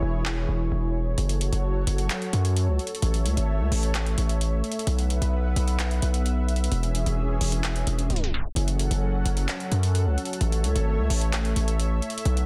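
A smooth, detuned analog pad with a chorus sheen and a distorted 808-style bass open this eerie, dark half-time trap excerpt together, the bass sitting heavy and aggressive up front with a noisy, fast-attack bite beneath the slow-blooming sawtooth chords. The trap kit slips in at 0.3 seconds with handclaps and metallic hi-hats roughened by vintage 12-bit sampler grit, low in the mix behind the dense, heavily limited master. A tape stop at 8.1 seconds drags the music down before the progression restarts on F#m, and the dry sound keeps the menace tight.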